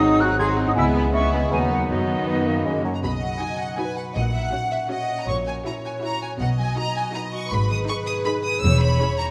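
A magical, playful film cue in 3/4, cut from a longer piece, opens with the full orchestra at once: a bell-like celesta and expressive violins with vibrato and portamento carry the melody, while an airy flute, a very quiet clarinet and a second, lush violin line add supporting lines, over a soft-attack bassoon, distant dark horn chords, a bright viola section, ringing fingerpicked harp arpeggios and smooth cello and double bass sections. At 2.8 seconds the celesta, flute, clarinet and horns drop away, the bassoon following just after, leaving strings and harp to carry the whimsical second section. The cellos and basses stop at 8.9 seconds as the violins, violas and harp ring on in a wet scoring-stage reverb.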